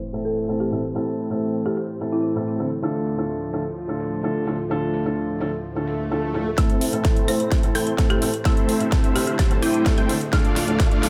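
Festival progressive house at 128 BPM, uplifting and euphoric, opens on an impact over a lush, chorused unison pad pumping under sidechain and a soft, felt-muted upright piano up front with tape echo, while a woody, hard-mallet folk marimba carries the melody and a big-room drum kit with a huge snare and metallic, overdriven hats runs beneath a filter sweep across Am and Dm. A very quiet swell leads into the build-up at 6.6 seconds, where a punchy electronic kick, a huge, detuned supersaw riff under a sweeping low-pass filter and a background unison pluck playing high arpeggios arrive together with a drum fill. The marimba returns at 7.3 seconds as the section builds toward the Dm change at 10.3 seconds.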